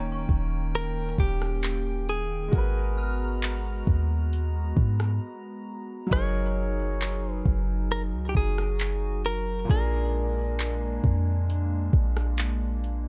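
A clean, compressed electric guitar carries the melody through a digital delay, over a clear, intimate grand piano with audible action noise, a hollow, flute-like pad thickened by chorus, and a deep, boomy 808-style bass, while a faint, inharmonic synth chime rings in the background until 4.7 seconds. From 0.3 seconds a soft, electronic R&B kit of kick, metallic hi-hat, handclaps and rim click sits up front, and a brief break arrives at 5.2 seconds as the harmony moves through D#7, G#m9, F#69 and A#7. This smooth, dreamy contemporary R&B excerpt has a dark, dry production.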